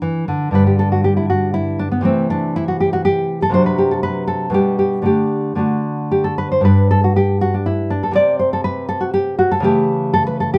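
Radiant and dance-like, this short passage cut from a longer piece is a classical, baroque-style dance in G major for solo nylon-string guitar, moving in 3/4 at roughly 111-124 BPM with a rubato feel. The fingerpicked guitar plays alone from 0.0 to 10.6 seconds, spanning G2 to D5 with a dark, full-bodied tone that sits up front. The harmony moves from G5 at 0.5 seconds through Am/C, D7/C, G/B and D, then returns to G5 before passing through C5 and ending on A7/C# at 9.6 seconds. A moderate stone-room reverb gives the deep classical sound a natural sense of space, as if captured live in a single room.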